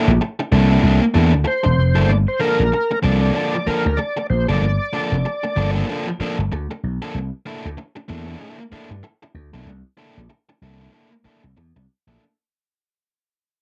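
A growly, punchy vintage slap bass with transformer saturation sits up front in this hypnotic, driving funk excerpt at 95 BPM, with a 16th-note swing feel, over an overdriven, picked electric guitar accompaniment. A thick, gritty tonewheel organ with percussive second-harmonic attack, chorus vibrato and slow rotary speaker carries the melody from 1.5 to 5.7 seconds, while the harmony moves between C13 and Gm9. The sound is a dry, close 1970s-style studio recording with light reverb, tuned to A4 = 439 Hz and fading out throughout.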